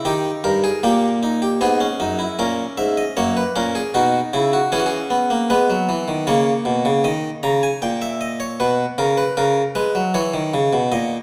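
A close-miked Flemish-style harpsichord, bright and full on a single set of strings, opens this stately, joyful excerpt from a baroque-style three-part fugue in 3/4, its plucked, up-front tone ringing alone through all 11.2 seconds in a moderate recital-hall reverb, with a new section arriving at 2.4 seconds.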